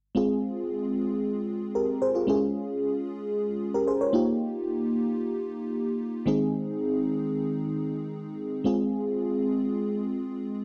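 A nostalgic, romantic pop excerpt opens on a lone FM electric piano layered with a soft pad, its lush, dreamy tone mellow and detuned under chorus, sitting up front in a dry, close 1970s-style booth as it moves through Fm, Db, Ebadd9 and Ab/Eb before returning to Fm at 8.7 seconds.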